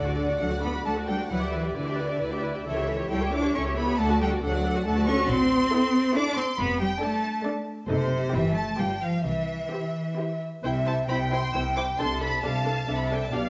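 Classical-period string orchestra movement, lively and graceful, moving quickly at 135 BPM in 3/4 with a rubato feel, heard as a short cut from a longer piece that starts in D major and shifts to C major from 5.3 s. The first violins carry the melody with a lush, soft-attacked, distant sound, while the second violins play a smooth, close second line up front, violas fill in accompaniment, and cellos and double basses anchor the bass, the cellos forward and the basses focused, all bowed with vibrato. A moderate recital-hall reverb surrounds the ensemble, and a new section begins at 10.6 s.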